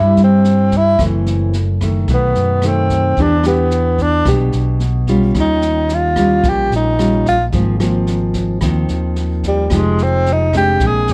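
A dark production with light reverb frames this relaxed, sunny bossa nova fragment, cut from a longer piece. A breathy tenor saxophone solos up front in a mellow jazz style, with subtone, vibrato and scooped notes. Beside it sits a thumb-plucked classical nylon-string guitar with audible finger squeak, over a round, punchy fingered electric bass. A distant, roomy brush kit with boomy kick, rim click and medium-tuned snare joins at 0.2 s, as the harmony moves from C through F#m7b5, B7b9 and Em7 to Eb9, Ab69 and Fm9.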